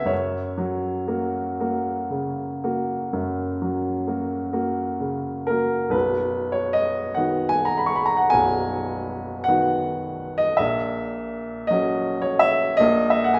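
A clear, up-front baby grand piano carries this tender, dreamy romantic nocturne alone, spanning B0 to C#6 in B major with an open tone. The rubato pulse drifts between 39 and 56 BPM in dotted quarters over 12/8, opening on F#, restating its opening theme on B at 5.9 seconds and reaching F#7/A# at 10.6 seconds. A wet recital hall reverb with a 1.7-second decay surrounds the instrument in this short passage cut from a longer piece.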